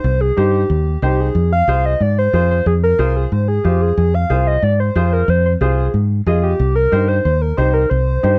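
The sound is close and detailed, with little reverb, so each part sits dry and clear in this short cut from a longer cumbia piece. At a brisk 183 BPM in a straight 4/4, the music feels danceable and passionate, moving from C minor to F minor and back to C minor at 6.6 seconds, with the tuning set slightly low at A4 = 436 Hz. A pure, round sine lead with a fast attack carries the melody from the start, sustaining its notes up front with a shimmer of chorus and vibrato. Beneath it, a fingered electric bass sounds direct and amped, its foam-muted tone placed forward in the mix as it holds down the low register. A woody, natural upright piano joins at 0.4 seconds, adding accompaniment a little further back.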